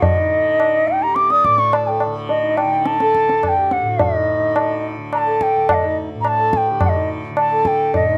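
Serene and radiant, this brief Hindustani classical passage moves at 106 BPM in a straight 7/4, cut from a longer piece. An up-front bamboo bansuri carries the melody with a pure, tongued tone and vibrato, while a reedy, breathing hand-pumped harmonium with a boxy character plays a second line beneath it. A softly plucked tanpura supplies a buzzing, shimmering drone, and a low-tuned, close tabla with a short ring keeps time, all captured dry in an open-air setting.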